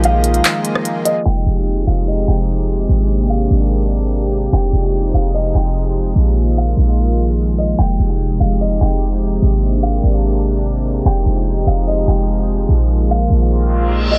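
Set in a filtered digital ambience, this spacious, ethereal cloud-rap hip hop fragment in half-time opens with crisp hats, handclaps and rim clicks from an up-front, tape-warm trap kit that stops at 1.1 s. Alongside it, a bright, detuned sawtooth pad with chorus, a deep, boomy sine 808 bass, a soft felt-muted upright piano melody with audible action noise, low-pass filtering and digital delay, and a glassy, drifting harmonics texture with chorus and reverb in the background all play throughout. A filter sweep runs from 1.3 s until an electronic reverse cymbal enters at 13.7 s.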